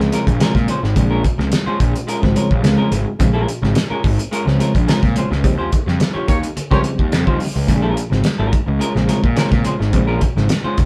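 A driving, hypnotic funk groove at 107 BPM in Bb dorian opens at once, with a cloth-damped, thuddy drum kit and a fuzz-soaked, punchy picked electric bass sitting up front, the kit giving a fat snare, tight kick and hi-hat with a rolled-off top. A clean hollow-body jazz guitar plays accompaniment, while a mellow tine electric piano adds stabs from the background, and very quiet congas with a bright, thin-skinned tone and soft hands join almost immediately. The harmony sits on Bbm7, and the electric piano takes a fill at 2.1 seconds. At 5.4 seconds the band hits an accent as the chord moves to Eb13, and a warm vintage horn section briefly sounds a second line with light vibrato at 6.3 seconds before the music returns to Bbm7. The whole band plays live in one room with moderate studio reverb, and the clip is cut from a longer piece.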